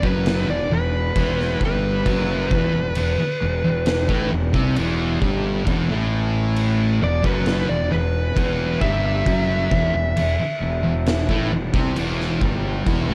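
A fuzz lead guitar sits up front, its distorted, picked melody moving between B4 and E5 through a digital delay before it drops out at 11.5 seconds. This is slow, heavy, hypnotic stoner and doom metal at 67 BPM in 4/4, cut from a longer piece and resting on a single E minor chord with a straight feel. Beneath the solo, two fuzz guitars carry the riff from E2 to C4: one compressed and set in the background, the other thick and dark. A growly, punchy fingered electric bass with overdrive sits up front, bright and direct from the amp, spanning E1 to C2. The oversized low-tuned drum kit brings a boomy kick, a fat snare and crash cymbal, saturated and gritty in a bright stone room. The whole recording has a dark, warm studio production.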